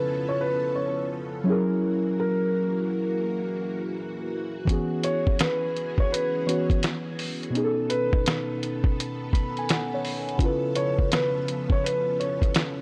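A dry, gritty recording with light reverb opens on a reflective, melancholic lo-fi hip hop excerpt in C# minor at 84 BPM with a swung 16th feel, where a felt-muted upright piano carries a mellow melody over warbling, dark synth keys treated with chorus and phaser, a lush string machine holds sustained chords through its own phaser and ensemble chorus, and a muffled, pitched-down sampler-style drum kit with a thumpy kick, snaps and hi-hat enters at 4.7 seconds, while the synth keys add a fill at 9.0 seconds before the chords return to C#7alt.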